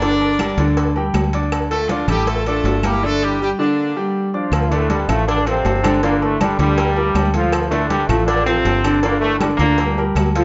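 A studio sound with moderate reverb and a dark, rolled-off top frames this driving, danceable salsa excerpt in D minor at 160 BPM, moving between Gm and Dm. A brilliant, tight horn section doubled in octaves carries the melody up front until 4.3 seconds, when a bright trombone section takes over. Beneath them sit a clear, intimate concert grand with audible action noise and long sustain, a round, punchy, foam-muted fingered electric bass, thick-skinned high-tuned congas, a distant cowbell, ringing agogo bells and timbales, and woody, dry claves.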